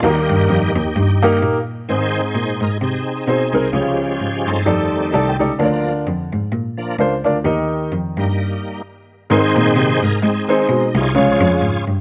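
This short excerpt sounds worn and warbling, like an old cassette, its pitch drifting inside a small room with light reverb. It is an uptempo gospel piece at 130 BPM in 4/4 and Ab major, with a swung eighth-note feel and a soulful, hopeful mood. A bright, shouting tonewheel organ takes the lead up front, its full sustained chords lightly overdriven and colored by chorus vibrato and a fast rotary speaker as it solos throughout. A concert grand piano with natural tone and deep bass supplies the accompaniment, stepping forward with a brief fill from 4.9 to 5.6 seconds. Underneath, a single bowed cello plays the bass line with a clear, smooth, even sound and vibrato, and the band hits a stop from 8.4 to 9.3 seconds before the opening material returns.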